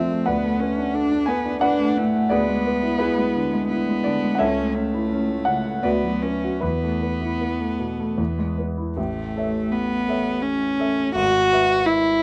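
In an unhurried 3/4 with a rubato feel, this lyrical, serene classical fragment drifts between 75 and 89 BPM in A major, cut from a longer romantic work. A single bowed cello carries the melody from the start, its tone rich and smooth, with light vibrato and an even, close presence between A3 and F#4. A clear concert grand piano accompanies throughout, spanning G#1 to G#5, its worn character anchored by a deep bass, and both instruments sit up front. The harmony moves from D6 through E7/D, A/C# and Bm/D to an Esus4 that settles on E at 8.2 seconds, before a new passage opens on A at 9.0 seconds and turns to E/G#. Light reverb and a dark, warm production give the duo a gentle, intimate glow.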